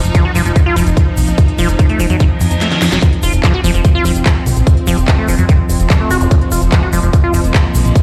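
A hypnotic, intense psychedelic trance cut at 146 BPM opens with a bright, morphing wavetable pad fading in under phaser, built-in reverb and sidechain pumping, a punchy, dark plucky analog bass, a techno kit of cracking snare, handclaps and smooth hats, and a grainy egg shaker in the background, as a tight electronic kick up front, a soft, breathy pad and a squelchy, resonant liquid acid bass riff with a filter sweep, chorus, dub echo and tape colour join; a reverse cymbal sounds at 2.3 seconds, the kick drops out for a drum fill from 2.6 to 3.0 seconds, and an electronic zap arrives at 6.2 seconds, all in a large studio reverb.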